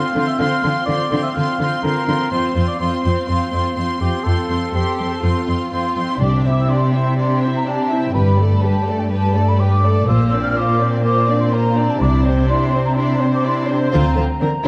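Triumphant and soaring, this cinematic excerpt in C mixolydian at 124 BPM sets a lush, vibrato-rich violin melody over a second violin line, distant violas and an up-front cello bass, with a mellow cor anglais until 5.7 s, when a pure, soft-edged flute group takes over. A focused double bass section joins at 6.2 s alongside a brief, round timpani entry, all framed by moderate scoring-stage reverb in a dark, warm production.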